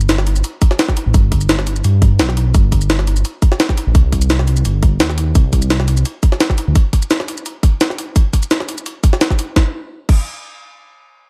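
The sound is dry and close, with every part placed up front in the mix. This liquid drum and bass excerpt, cut from a longer piece, has a lush, dreamy mood over a lightly swung sixteenth-note feel in 4/4. A deep, rumbling detuned sawtooth bass with a sine layer holds the low end, and its beating, saturated tone sounds dark, with a fast attack and long sustain, until it drops out at 6.7 seconds. A compressed, pitched-up jungle sampler-style drum kit with a large-room character brings gritty crash cymbal, hi-hat, shaker and a high-tuned snare. A tight, layered electronic kick with a small-room sound joins at 0.6 seconds, and the passage plays as a drop until 9.6 seconds, when a new section begins with the drums alone.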